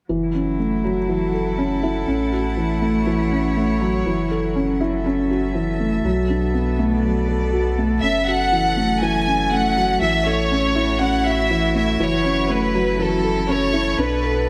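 Opening with a dark, boxy felt-muted upright piano riff touched with delay over distant bowed string quartet chords and a round sine sub bass, this cinematic, moving electronica piece in F# minor at 121 BPM cycles through F#m7, A6 and Bm7 in a lush hall until a rich chamber violin section brings an up-front melody with smooth vibrato at 8.0 seconds.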